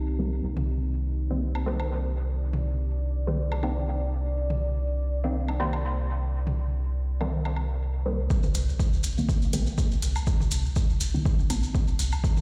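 Deep and hypnotic, this dub techno excerpt opens on a moody, chorused ambient pad holding a Cm7 chord under a filter sweep, with a round analog bass and a muted, phased dub chord stab trailing echoes, electronic toms and woodblock all pumping together, until at 8.3 seconds the pad drops out as a punchy kick and grainy maracas arrive, a hi-hat follows just after, and the stab takes its own filter sweep, the whole played into a bare stone room through a big sound system.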